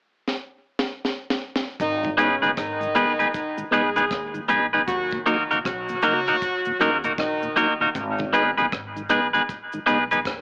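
A heavy, spacious dub reggae excerpt with a swung, cassette-worn AM-radio sound opens with a dry drum fill of tight kick, high-tuned snare, rim click and hi-hat at 0.3 s, before a punchy, up-front horn section with dub echo, a woody, growly pizzicato upright bass and a cabasa tucked in the background arrive at 1.8 s, joined by a mellow tonewheel organ with key click and slow rotary speaker and a bright, twangy, compressed electric guitar with dub echo as the chords move between G# minor and D# minor, with the horns dropping out at 7.8 s.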